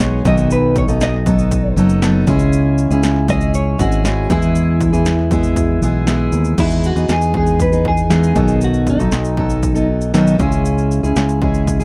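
A fingerpicked steel-string acoustic guitar sits up front, its warm, full-bodied tone driving this carefree, sunny acoustic pop excerpt in a straight 4/4 at a relaxed mid pace. A clean, compressed electric guitar carries the melody with a subtle chorus shimmer, then drops out at 9.9 seconds while the rest of the band plays on to the cut at 11.8 seconds. Underneath, a fingered electric bass adds a round, dark, amped low end, and a punchy analog drum machine keeps time with a dry kick and snare, shaker and a crash cymbal. The harmony moves through B7, C#m and E before shifting to an Emaj7 passage around 6.6 seconds. The close, detailed recording has little reverb, giving the whole arrangement an intimate, present sound.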